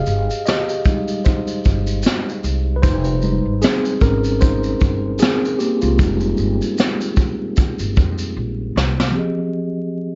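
A swung 76 BPM lo-fi hip hop groove in 4/4 and F minor, reflective and melancholic, pairs a brushed vintage drum kit with a tight kick, snare, hi-hat and shaker, a woody pizzicato upright bass and a mellow, low-pass-filtered tine electric piano that takes the lead over a single Fm9 chord, with a drum fill from 8.4 seconds before the piano rings out to 10.2 seconds, beneath light reverb and vinyl crackle in this cut from a longer piece.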